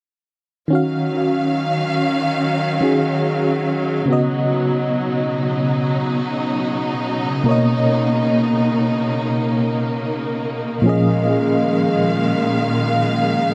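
R&B in free time and E-flat minor, sensual and longing, with an FM electric piano playing dark, full-bodied accompaniment chords whose fast attack decays under a tremolo and a trail of tape echo. A lush studio string section holds sustained, bowed chords alongside it from 0.7 to 13.5 seconds, its smooth top shaded with vibrato and expressive portamento. A moderate plate reverb and an echo-heavy mix surround the harmony as it moves from Ebm9 through Db9sus4 and Bmaj9 to Db69/Bb.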